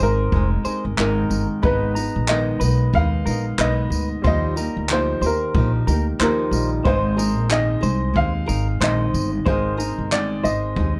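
This short, easy-going acoustic pop excerpt opens with the full band together: a woody, short-sustained upright piano carrying the heartfelt melody over swung sixteenth notes. A small-sounding fingerpicked nylon-string guitar and a very quiet, polished baby grand piano fill in the accompaniment, while a clean, compressed electric guitar picks arpeggios in a higher register. Up front, a pizzicato upright bass on gut strings gives a dark, thumpy foundation. The brush kit, with its boomy kick, rolled-off top, handclaps and tambourine, sits mid-forward in a studio room. The harmony moves from Ab through Abmadd9 and Ebadd9 before returning to Ab around 6.9 seconds, and the dry, closely miked sound keeps every detail intimate.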